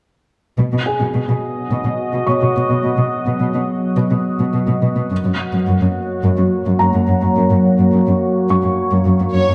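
Soaked in wet, dark scoring-stage reverb, this brooding, vast cinematic fragment rests on a woody, lush bowed cello section carrying the bass from 0.6 s, with harmony moving from B to F# at 5.1 s, beneath a morphing, detuned wavetable pad with phaser and a felt-muted upright piano whose soft, intimate notes, audible action noise and delay add texture, until a smooth, warm violin section with vibrato steps up front at 9.3 s.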